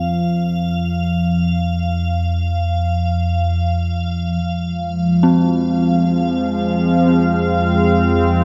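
Ominous and unsettling, this fragment of a dark ambient drone in F minor hangs in free time over a single F minor chord. A warm, evolving analog drone of sawtooth, pulse and triangle waves with ring modulation sits up front from F2 to Ab3, while an icy, crystalline glass pad glints high at F5 and an eerie, inharmonic FM bell plays mellow arpeggios around C4 in the background through tape echo. At 4.7 seconds a bright, resonant sweeping pad enters with detuned sawtooth chords and a filter swell, all sunk in a dark production with a cathedral reverb that rings for 7.0 seconds.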